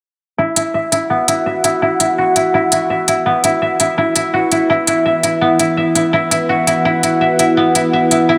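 A mellow, woody koto opens this dark, tense half-time drum and bass passage at 0.4 s, its up-front fingerpicked arpeggios sounding through a low-pass filter with a sweep and a tape echo. A crisp, produced electronic hi-hat joins at 0.6 s, sitting up front with the sheen of a large room. At 1.3 s a deep, moody ambient pad enters with slow-attack sustained chords, its detuned sawtooth unison warbling through chorus over a sine sub octave for a vintage, shadowy body. The music runs at 167 BPM in 4/4 with a half-time feel and sounds an Esus2 chord at 0.4 s. A huge ambient reverb surrounds the parts, and this short section is cut from a longer piece.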